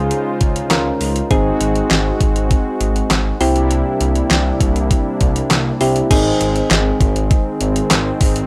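Synth-pop with an upbeat yet wistful mood, this short cut from a longer piece moves through Dbmaj7, Ab7 and C7 before settling on Ab at 6.1 seconds. Soft, round electric-piano-like synth keys with chorus and a filter sweep sound alongside a brassy, detuned analog pad that evolves with vibrato, while a smooth sawtooth-and-square synth bass with a moving notch holds the low end. Up front sits a thumpy, overdriven 8-bit drum machine of kick, snare, hi-hat, handclaps and crash, re-recorded in a small room, all within a gritty hardware sound and digital ambience.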